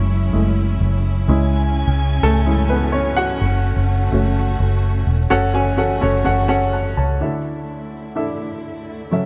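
Piano-driven pop in F# minor at 126 BPM, dramatic and driving, this excerpt features a clear, woody, slightly detuned upright piano carrying the accompaniment and stepping forward with a featured solo until 5.3 seconds, over soft-attack bowed strings holding sustained chords with vibrato and portamento, and a round, punchy, foam-muted electric bass up front that stops at 7.2 seconds as the harmony moves from F#m7 through C#m and F#m to a closing Dsus2, all set in a dark production with moderate scoring stage reverb.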